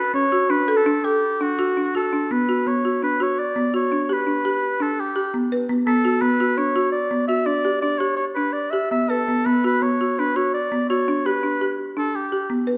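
A warm oboe opens this short section of contemporary chamber music in a restless, playful 5/4, its smooth-topped classical line carrying light vibrato and a punchy, up-front presence, while a folk marimba enters just after with woody, rustic arpeggios struck by medium hard mallets. The marimba sounds dry and boxy, as if in a small room, set close beside the oboe as the harmony moves from a rootless Dmaj7 through B minor and G colours. A moderate concert hall reverb surrounds the pair, and the oboe stops at 12.5 seconds, just before the marimba.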